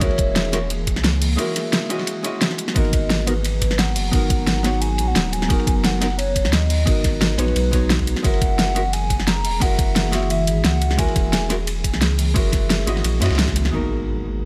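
Dreamy and melancholic, this liquid drum and bass excerpt moves at 175 BPM in 4/4 with a light swing on the sixteenths, cut from the drop of a longer piece. A hollow, woody synth lead with a warbling vibrato, chorus and digital delay carries the melody until 11.7 seconds, while a dark, clean hollow-body jazz guitar, picked and compressed with its own delay, plays accompaniment beneath it. An ethereal, airy pad of detuned unison voices holds sustained chords in the background with ensemble chorus and built-in reverb, and a round, deep sine sub bass sits up front. The drums layer an overdriven, knocking electronic kick, an up-front pop kit with a fat snare, and a gritty, saturated breakbeat kit with dark cymbals tucked behind, all driving until a band accent at 13.4 seconds. The harmony drifts between F#9 and G#m9, and a background electronic impact closes the passage from 13.7 seconds under light reverb.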